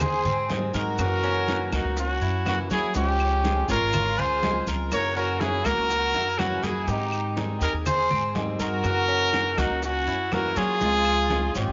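From the opening moment, a punchy trumpet with vibrato carries the melody up front over a sunny, relaxed Cuban son and guajira groove at 122 BPM in a straight 4/4. Beneath it, a rich, smooth violin section bows a second line in the background, while a bright flamenco guitar fingerpicks the accompaniment, its finger squeaks audible. A metallic tres with doubled strings picks arpeggios further back, and a dark, woody pizzicato upright bass sits up front. The percussion blends thick-skinned congas, round, low-tuned bongos played with soft hands, very quiet woody claves, a raspy guiro and grainy maracas, with a drum fill between 6.1 and 6.9 seconds. The harmony moves through Abmaj7, Gb7 and Dbmaj7, and a moderate echo-chamber reverb fills this cut from a longer piece.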